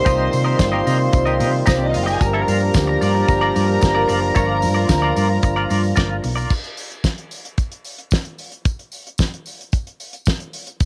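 A straight disco beat from a dry, damped 70s drum kit with a fat snare and tight kick sits up front, while a jingly tambourine stays in the background and a round, punchy hollow-body bass sits darkly underneath in this glamorous, danceable fragment of a longer piece. Over a Cm7 to Gm7 change, a French horn section holds sustained chords with light vibrato, a reedy, gut-toned string section plays a second line, and a bright, scooped semi-hollow guitar adds clean picked accompaniment with tremolo, all three carrying a cassette-tape colour. At 6.5 s the harmony drops away and the drums and tambourine carry on alone in a lightly reverberant, homespun studio ambience.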